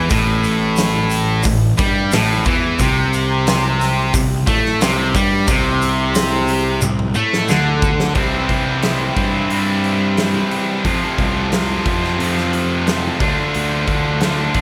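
A straight 4/4 classic rock groove at 89 BPM drives this swaggering, gritty clip, cut from a longer piece, where a huge arena drum kit with a fat snare and punchy kick pounds beneath two distorted guitar riffs, one scooped and the other tight and up front, over a growly, fuzz-laden picked bass. A grainy egg shaker sits distant in the background until 8.0 seconds, and a drum fill at 6.8 seconds carries the riffs from A5 and C5 power chords into a second section moving through C, F and D minor. Studio reverb lends the whole a big-room sheen.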